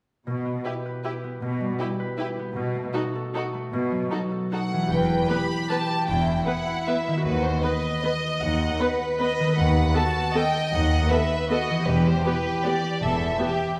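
Concert harp arpeggios and a rich cello section carrying the bass open this sweeping, bittersweet orchestral ballroom waltz in E minor at 0.3 s, moving at 155 BPM in 3/4 with uneven, rubato beats. A close, focused viola section adds lush accompaniment, while a smooth, vibrato-laden studio violin section sings the melody in the upper register, and a second violin section with light vibrato traces a gentler line beneath it. The harp is fingerpicked and ringing, its acoustic tone warm. At 4.9 s the harmony settles on E minor and a bowed double bass section enters in the background, expressive and deep, as the chords lean toward the dominant. A scoring-stage reverb wraps the ensemble in a generous hall, and the passage is cut from a longer piece.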